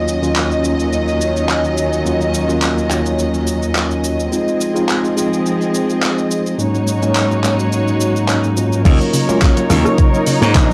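A lightly swung 4/4 groove at 106 BPM drives this groovy, sleek nu-disco excerpt in Eb dorian, with a pop drum kit of overdriven hi-hat, handclaps, rim click, cabasa and crash cymbal under a mellow tine electric piano with tape echo and a dark, bowed sul tasto string section pumping on sustained chords through Ebm7, Fm7 and Ab7sus4. Just after the drop at 8.8 s, a knocking, overdriven electronic kick and a punchy, glassy slap bass come up front, joined by a detuned analog pluck arpeggio with chorus and analog delay in the background, and very quiet congas briefly from 9.3 s. The whole track carries the hazy color of a home cassette recording in a moderate studio reverb.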